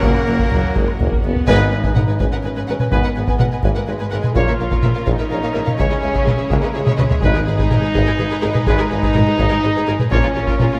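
Saturated, compressed taiko drums pound up front in a straight 3/4, driving this relentless, epic orchestral film-score fragment, with a drum fill and then hard-mallet timpani hits arriving at 7.2 s after an earlier timpani accent with the whole band at 1.5 s. A dark, lush violin section carries an expressive bowed melody in the background over a very quiet second violin line, close violas with portamento, and a smooth string section, while a mellow, airy flute is barely audible until 1.0 s. Distant, roomy French horns and tight, bright trombones hold sustained chords, a clear, punchy trumpet fires vintage-toned stabs, and woody double basses, rich cellos and a warm tuba anchor the low end in a moderate scoring-stage reverb.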